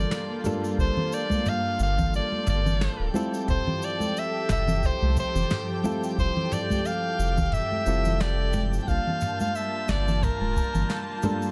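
An edgy soprano saxophone with light vibrato carries the wistful, smooth melody of this sunset chillout excerpt at 89 BPM in G dorian, its line trailing a delay over soft, mellow electric-piano-like synth keys with chorus and a dark, bowed studio string section holding sustained chords. A round analog bass sits up front, while soft brushes on snare, toms and cabasa, close congas and a deep electronic kick (from 0.8 seconds) keep a swung groove in a small room, the congas and kick sitting in the background. A glassy harmonics texture drifts behind everything else, and the harmony moves from Gm9 to Fmaj9 at 3.1 seconds before returning to Gm9.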